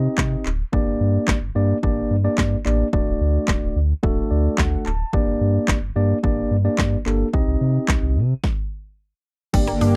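Dance-pop at 109 BPM in G minor, driving and energetic, taken from a longer piece and recorded dry and close in a 1970s studio style. A mellow, clean tine electric piano sits up front with the accompaniment, breathing with sidechain pumping alongside a deep, full sub bass with an added octave, while a punchy, tape-toned house kit of kick, snare, hi-hat, handclaps and crash drives the groove over a progression moving through Cm, Gm and D. The electric piano takes a short fill from 4.0 to 5.1 seconds, and the band drops into a stop at 8.4 seconds. At 9.5 seconds a smooth, detuned analog pad with chorus arrives with sustained chords, joined by a woody, round FM pluck playing arpeggios through chorus, phaser and slapback echo, and a jingly tambourine tucked in the background.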